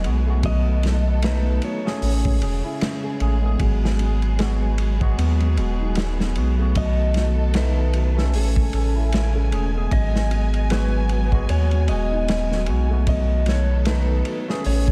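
A brooding, hypnotic trip hop excerpt at 76 BPM in G# phrygian opens with a deep, round dub sub bass sitting up front beneath a crunchy, saturated breakbeat kit with dark cymbals and a punchy kick, a barky, overdriven tine electric piano through a combo amp with harmonic tremolo and tape echo, lush bowed symphonic strings holding sustained chords with vintage 12-bit sampler grit, and a felt-muted upright piano playing mellow, intimate arpeggios in the background, before a clean lap steel guitar, played with fingerpicks and slide, enters at 0.5 seconds with volume swells and dub echo over a swung B7, Amaj7, G#m7 progression in a small room.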